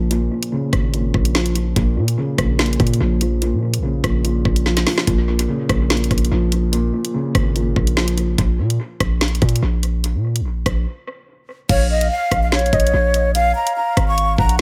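Drill hip hop with a menacing, dark mood, moving at a half-time feel in 4/4, cut from a longer piece. A dark, mellow concert grand piano opens with an intimate, boxy tone and audible action noise, treated with a low-pass filter sweep through the first 5.1 seconds and an analog delay, before it drops out at 8.4 seconds. Beneath it, a punchy, heavy 808-style bass with a sine body, a noise layer and a fast, decaying attack sits up front alongside an overdriven electronic drum kit of knocking kick, woody snare, bright hats, rim clicks and crash, with a short drum fill just before 5.1 seconds. A break follows, and at 11.7 seconds a breathy, hollow jazz flute with vibrato and lifted highs takes the melody, joined by a quieter velvety synth lead built from detuned sawtooth and triangle layers with chorus. The mix is echo-heavy with light reverb, and delay colours the piano, drums, flute and synth.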